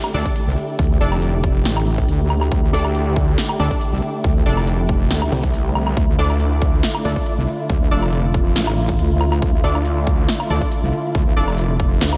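Lush bowed strings pumping under a low-pass filter and a big-room kit with crisp hats, snare and woodblock open this heavy, menacing half-time wobble dubstep cut at 139 BPM in D minor, soon joined by a nasal, cassette-tinged orchestra-hit synth stab with analog delay, a chorused sawtooth wobble bass, and a punchy overdriven kick, while a snarling, growling distorted saw bass sits up front from 2.7 to 6.8 seconds and again from 9.6 seconds over a Dmadd9 chord.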